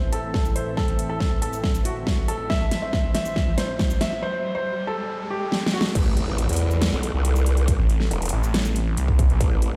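A soft, felt-muted upright piano carries the melody with dub echo over a lush, evolving supersaw pad with sidechain pumping and a low-pass filter, opening this menacing, heavy half-time wobble dubstep excerpt in A minor at 139 BPM. A punchy electronic kick, a huge snare, metallic hats, shaker and crash drive the build-up through drum fills and a background riser. At 6.0 seconds the drop lands on an impact and an aggressive, wobbling growl bass with chorus and overdrive, joined at 7.8 seconds by a snarling, detuned sawtooth bass with distortion, all heard through a moderate hall reverb and the stone echo of a bare room on a big sound system.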